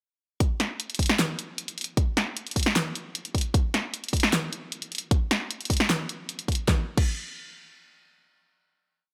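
Euphoric and lush, this short future bass piece runs at 153 BPM in 4/4 with a half-time feel, its drop spanning 0.4 to 6.7 seconds before a final hit closes it out by 8.2 seconds. A punchy, up-front electronic kick drum lays down a half-time pulse alongside a pop drum kit whose fat snare, hat rolls, open and closed hi-hats and crash cymbal drive the groove, both parts playing from 0.4 to 7.1 seconds. The layered, produced drums carry the sound of a small room, and a light reverb sits across the mix.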